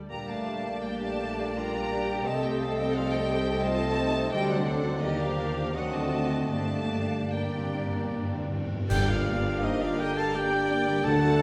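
A lush violin section carries the melody with smooth, even vibrato in this yearning, elegiac fragment of a slow romantic orchestral movement in G minor, moving in a rubato 3/4 at around 75-89 BPM. Beneath it, a ringing harp plays arpeggios while violas and a bassoon provide accompaniment, and a warm horn section holds sustained chords. Flute, oboe, clarinet and a second violin section weave supporting lines, with the flute's hollow, pure silver tone and the clarinet's punchy presence standing out against the distant, roomy oboe. Double basses and a very quiet cello section with portamento anchor the bass as the harmony passes from G minor through D7 and Ebmaj7 before settling back on G minor. Dark cymbals and concert bass drum join at 4.3 seconds, timpani with calf heads play a fill from 6.5 seconds, and at 8.9 seconds a mellow trumpet adds stabs and a tuba deepens the bass in a brief full-band accent. 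The whole orchestra sits in the generous reverb of a recital hall or church.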